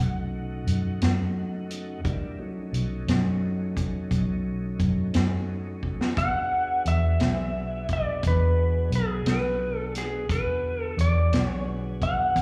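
Heard through a club PA with light reverb and small-room ambience, this laid-back, rollicking slow blues in 12/8 moves at 58 BPM over B7, shifting to E7 at 6.2 seconds. A clean, dark lap steel carries the slide melody with volume swells and slapback echo. Smooth tonewheel organ chords with chorus vibrato and slow rotary speaker support it, and a round, foam-muted fingered electric bass sits up front, while a vintage kit with a punchy kick and high-tuned snare, also touched by slapback echo, enters at 0.7 seconds and plays a fill at 5.8 seconds in this cut from a longer piece.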